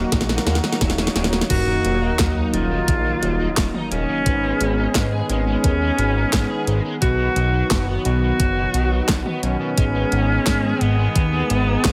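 Driving and cinematic, this 87 BPM synthwave excerpt in Eb minor opens with a drum fill from a thumpy, tape-colored electronic kick and a layered pop kit with a fat snare, over a thick, detuned sawtooth bass pumping up front, a smooth warm pad with chorus, dark, round synth brass stabs and a crunchy, double-tracked overdriven guitar riff in the background, before a clear, distant alto saxophone melody with vibrato and delay enters at 1.5 seconds, followed by a sub drop at 1.6 seconds.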